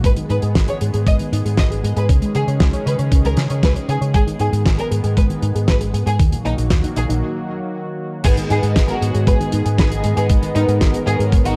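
Italo disco with a melodramatic, nostalgic mood, this short cut from a longer piece moves at a steady, straight pulse over a minor-key progression. A dark, intimate violin section carries the melody with light vibrato and a soft, sul tasto touch, its lines trailed by digital delay. Beneath it a smooth, warbling analog pad holds sustained chords with chorus, while a gentle, round pluck sits in the background tracing arpeggios through chorus and delay. The bottom end comes from a punchy hollow-body electric bass and a thumpy, sampler-style electronic kick, joined by a dry, damped 70s kit with a fat snare, hi-hat and crash in studio reverb. After a break from 7.2 to 8.2 seconds, mellow, detuned synth brass enters at 8.2 seconds with stabs in the background. The production is dark and warm, with light reverb and a small-room ambience.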